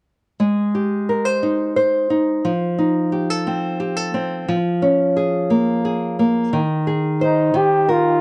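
Worn, warbling cassette tape with a drifting pitch and light reverb colours this short, tender six-eight pop ballad in Ab major, moving at 59 BPM in dotted quarters with a straight, heartfelt feel. An up-front, small-sounding nylon-string guitar fingerpicks the accompaniment from 0.4 seconds through chords such as Abmaj7, F7 and Bbm7/F. At 7.2 seconds a present flugelhorn enters with a soft attack, playing a brief jazz-style solo melody.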